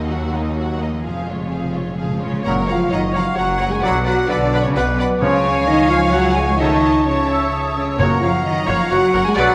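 In a straight 3/4 at 130 BPM, this heroic, adventurous cinematic passage in F# major opens with lush bowed strings: a rich violin section carrying the melody, a focused, smooth-topped violin second line, background violas, and rich cellos and double basses on the bass, over very quiet, ringing harp arpeggios and a background timpani fill that builds from 1.1 seconds. From about 2.2 seconds a dark, distant French horn section holds sustained chords, joined at 2.5 seconds by a clear, vintage trombone section, while a warm clarinet, a mellow, roomy cor anglais and an airy, hollow flute section add second lines, and the timpani returns briefly twice more. A wet scoring-stage reverb gives the orchestra a grand sense of space as the harmony moves from D#m through Bm and A/C# before settling back on F#.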